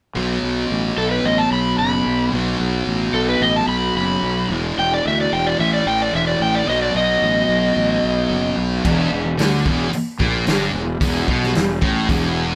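A straight 4/4 pulse at 111 BPM drives this brooding, heavy blues rock and southern rock passage in E minor, cut from a longer piece and played by a power trio live in one room. A thick, double-tracked fuzz guitar carries the riff up front from the opening moment, with a growly, punchy fuzz bass fingered low beneath it, the two parts sounding through to the end at 12.6 seconds. From 1.0 to 8.5 seconds an overdriven slide guitar sings the melody in a higher register, standing out as the loudest part over chords moving from B5 through E5 and A5 to B7. At 8.8 seconds the harmony settles on E minor and a vintage acoustic drum kit enters with dark cymbals, a medium-tuned snare and a tight kick, shifting the music into a new section. Moderate studio reverb gives the band a natural room sound, and the fuzz tones keep the whole performance thick and dense.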